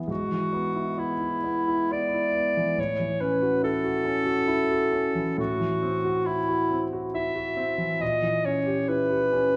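Set in a wet recital hall with a 1.4-second reverb tail, this short lyrical, warm romantic duo moves at 68 BPM in 3/4 with uneven, rubato beats, tuned to A4 = 441 Hz. A clear, up-front clarinet in classical style carries the melody from 0.1 s, ranging from E4 to E5. Beneath it, an intimate, present grand piano accompanies with long sustain and audible action noise, moving through E/G#, F#m7/A and F#m7b5/A before reaching A#dim7 at 8.0 s.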